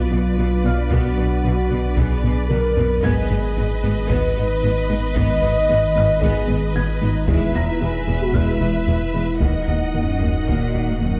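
A hybrid orchestral and electronic film cue at 113 BPM in 4/4, this brooding, relentless passage moves through Bm, Abm, E and Ebm, and it is cut from a longer piece. A dark violin section carries the melody with soft-attacked, expressive vibrato, while a second violin line sits smooth and even beneath it, and a very quiet viola section adds portamento-tinged accompaniment. The low end is thick: a deep, clean sine sub bass, a punchy, wave-folded analog bass riff entering at 0.1 seconds, and close, lush cello and double bass sections. A distant, roomy French horn section holds sustained chords against a glassy, ethereal FM pad treated with chorus, phaser and its own reverb, while a felt-muted upright piano with audible action noise and digital delay adds intimate texture in the background. A quiet taiko ensemble struck with hard sticks enters at 0.9 seconds, with a drum fill from 2.2 to 3.0 seconds, and a wet recital hall reverb wraps the dark production.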